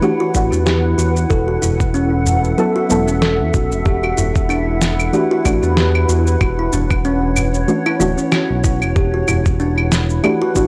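A swung 94 BPM groove in 4/4, built on an overdriven, thumpy kick up front with a fat snare, shaker and claves, drives this mystical organic downtempo excerpt in E dorian, where a smooth sawtooth synth bass pumps beneath dark, nasal chord stabs treated with chorus and analog delay, a woody kalimba plays delayed arpeggios, a blurred granular cloud pad hovers in its own reverb, and a small, dry udu sits in the background from 1.6 to 9.4 seconds over an Em9, F#m7/E and Dmaj9/E progression, captured as a gritty hardware recording with light reverb.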